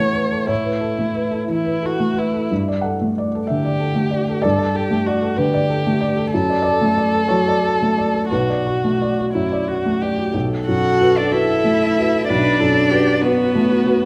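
Neoclassical piano and strings in a reflective, fragile rubato 6/8, where a dark, close violin with vibrato and portamento carries the melody over a soft, felt-muted upright piano whose action noise is audible up front, before a focused viola and a rich cello join at 10.3 and 10.7 seconds under moderate concert hall reverb.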